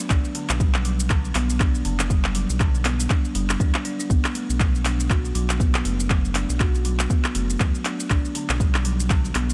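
A swung 120 BPM 4/4 groove from a deep, tape-warm electronic kick drum and a layered deep house kit of handclaps, shaker and metallic hi-hats drives this earthy afro house excerpt, where a woody, buzzing kalimba plays ringing, airy arpeggios with dub echo and sidechain pumping over a round, dark analog bass that also pumps, as the harmony moves from a rootless Gmaj7 to B5 at 4.1 seconds and a rootless G at 8.1 seconds within a digital ambience.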